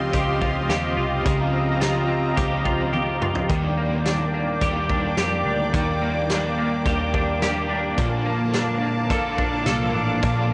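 Dream pop at 107 BPM in Eb lydian, this floating, ethereal excerpt from a longer piece sets a smooth, detuned sawtooth pad with chorus and tremolo up front beside a bright, twangy clean electric guitar playing arpeggios through ensemble chorus and analog delay, while an overdriven hollow-body guitar adds tremolo-and-chorus accompaniment. A round, foam-muted picked bass anchors the low end, and a loose indie drum kit with a punchy kick, hi-hat, snare, toms and tambourine plays a fill from 2.9 to 3.5 seconds as the chords move from Dbmaj9#11 to Ebmaj7 and then Bbmaj7. The sound is dry and gritty with light reverb and a cassette-tape, rolled-off top.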